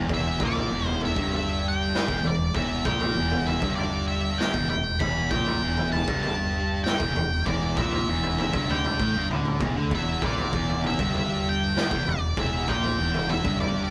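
A raw, live-in-one-room sound with light reverb opens this heavy, hypnotic stoner and doom metal excerpt, built on a steady 4/4 groove over a single minor chord that holds throughout its 13.9 seconds. A bright, double-tracked fuzz guitar sits up front with its low riff, while a growly, overdriven fingered bass sits in the background and a dark octave-fuzz lead guitar carries the melody high above. A gritty, saturated garage drum kit with a punchy kick, medium-tuned snare and toms has a mid-forward, rolled-off top that keeps the whole band sounding close and rough.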